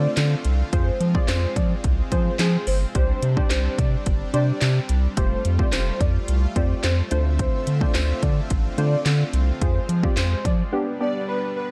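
An airy, dreamy lead with chorus, crisp detuned wavetable chord stabs, a lush supersaw pad and a round, deep analog bass all pump together from the opening of this carefree, euphoric dance-pop excerpt, joined at 0.2 seconds by an up-front house kit with a punchy kick, cracking snare, metallic hats and handclaps plus a very quiet, jingly tambourine, before the drums and bass stop at 10.6 seconds and the synths carry a short break in a dark digital ambience.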